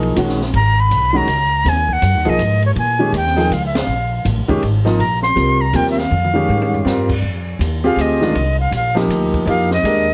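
Clear, intimate baby grand piano chords with audible action noise, a woody pizzicato upright bass and an open jazz kit with dark cymbals and a boomy kick set up a hypnotic, searching modal jazz groove in swung 3/4 at 161 BPM, joined at 0.6 s by a breathy, reedy flute with vibrato and a crisp chiff that takes a solo at 7.2 s after a band accent and a drum fill, the whole excerpt sitting in a moderate club reverb with a heavily compressed, radio-like sound.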